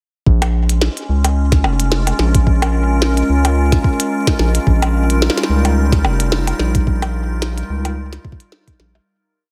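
A broken, overdriven electronic kick and a glitchy kit of tiny snare, clicky hats and bongo-like blips build an ever-changing, lightly swung groove at 109 BPM in 4/4, giving this short, complete IDM piece in Bb dorian an eerie, intricate feel. Underneath, a round analog bass holds long gliding notes, deep and mellow, while an icy, crystalline glass pad with chorus and its own reverb spreads slowly shifting chords from Bbm7 to Ebadd9 at 4.7 seconds. The mix sits in light reverb, and a fade-out begins at 6.1 seconds, with the pad lasting until 9.1 seconds.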